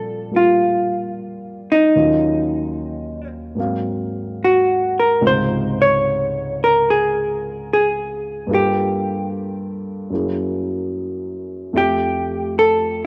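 A vintage hollow-body jazz guitar, clean, picked and up front with a cassette-tape tint, carries the melody of this tender, late-night swung jazz ballad over a dark, mellow grand piano whose audible action noise lends an intimate, close feel, both bathed in lush hall reverb across a short cut from a longer piece that moves from Bb69 through Dbmaj9 to a closing Fmaj9.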